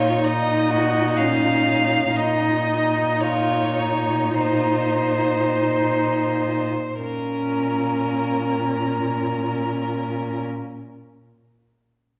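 The rhythm moves in a flexible, rubato 4/4 at a slow 41-66 BPM, easing to a slower pace through the first 7.0 seconds of this passage cut from a longer piece. It is a solemn, yearning romantic movement for string quartet in Bb minor, and all four bowed players sound together until 10.4 seconds. Up front, a rich first violin carries the melody between Bb4 and F5 with smooth, even vibrato, though it feels somewhat distant, while a second violin traces a warm, equally even second line beneath it. A close, expressive viola supplies soft-edged accompaniment with portamento, and the cello, also up front, holds a low Bb2 with the same tender slides and vibrato. The harmony rests on an Eb chord over Bb before settling onto Bb minor at 7.0 seconds, all surrounded by the lingering reverb of a recital hall or church.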